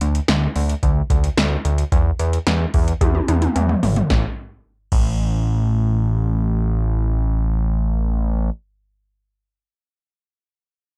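Synth-pop at 110 BPM in a straight 4/4, upbeat and bright, cut from a longer piece: a fat, detuned sawtooth analog bass with ring modulation, a filter pluck and a moving notch sits up front between G#1 and E2 for the full 8.5 seconds, while an overdriven analog drum machine with a deep kick, punchy snare, metallic hats, toms and crash plays a fill from 3.0 to 4.1 seconds before stopping at 5.1 seconds, all on a dry, gritty cassette recording with a faint mains hum.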